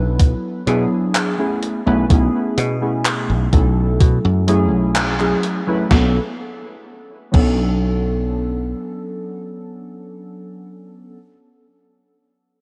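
Warbly lo-fi synth keys and a punchy, foam-muted slap bass thumbed dry and bright open the piece together, the bass holding the low end in B dorian until 8.7 seconds, before a slow, straight 4/4 pulse at 63 BPM arrives at 0.2 seconds with a thumpy, up-front electronic kick and a gated 80s digital drum machine of snare, handclaps, hi-hat and crash, both tape-warm with a small-room character. This melancholic, nostalgic vaporwave fragment, cut from a longer piece and tuned slightly flat, rests on those keys, detuned and dark, blending square and sawtooth tones through analog chorus and tape echo over chords moving from E9/B to F#m9/B and then Bm7 as a second section begins. The whole band hits an accent just before the shift, and the dreamy cassette-toned mix is soaked in plate reverb, with the keys ringing on alone to 11.2 seconds.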